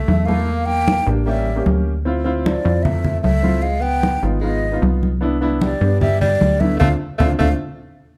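The groove moves at 152 BPM in a straight 4/4, an Afro-Cuban jazz excerpt with a sunny, sophisticated air. A breathy, hollow concert flute carries the melody, close-miked with a soft attack and straight tone, while a tenor saxophone plays a second line with vibrato and a subtoned, present jazz voice. A natural-sounding baby grand piano supplies the accompaniment, and a punchy, funky analog bass sits up front, its sawtooth and pulse-wave tone shaped by a filter pluck, a moving notch and a fast attack that decays. Congas with a thick, medium-tuned skin enter at 0.1 seconds, recorded acoustically in a live room. The harmony passes through rich chords such as Em7b5, A7b9, Dm9 and Cmaj9 before a band accent arrives at 6.8 seconds, joined by a drum fill at 7.4 seconds, and the chords drop out at 7.6 seconds. Light reverb frames a dark production.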